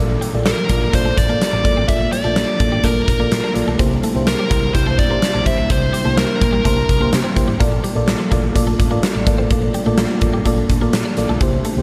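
A bluesy, overdriven lead guitar stands up front in this uplifting, nostalgic 1980s-style pop excerpt, carrying a distorted, picked melody with slapback echo and delay from 0.5 to 7.1 seconds. Beneath it, a huge arena drum kit drives a straight 4/4 at 126 BPM, its fat snare, boomy kick and hi-hat sitting forward in the mix. A woody fretless electric bass adds a round, punchy, hollow-body tone through ensemble chorus. A mellow FM electric piano comps with a soft, decaying touch treated with chorus and phaser, and a clean, compressed twelve-string electric guitar plays a riff in the background with analog chorus, slapback echo and delay. A very quiet, shimmering pulse-width pad holds sustained chords over the Bbmaj7, C7 and Bbmaj7 changes, and a lush hall reverb gives the whole mix a big arena sound.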